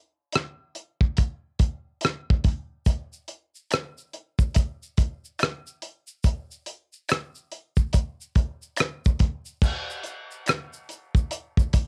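Dry and close, this home cassette recording carries little reverb, giving a short cut from a longer R&B piece a sensual and relaxed feel. At 71 BPM in 4/4 with a swung sixteenth-note feel, a damped 70s acoustic drum kit sits up front from 0.3 seconds, its tight kick, rim clicks, hi-hat and crash heard through dark cymbals and a rolled-off top with a tape-soaked warmth. At 2.9 seconds a tube shaker and finger snaps join with a group handclap, sounding acoustic and set well back in a small room beneath the kit. The groove shifts into a new section at 9.6 seconds and carries on until the cut ends.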